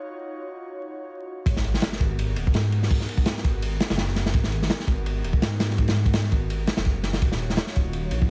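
Drum and bass in a jungle vein at 167 BPM in G# minor, this atmospheric, raw excerpt opens on an airy, breathy pad holding sustained D#m9 chords, softened by chorus and a vintage 12-bit sampler grit. At 1.5 seconds the drop arrives with a very quiet sub drop impact, as a crunchy, saturated acoustic breakbeat kit of kick, snare, hi-hat and ride cymbal sits up front with dark cymbals and a rolled-off top, joined by a deep, rumbling detuned saw bass thickened by tube saturation. The harmony moves to G#m9 and returns to D#m9 at 7.2 seconds, all set in studio reverb over a bed of vinyl crackle.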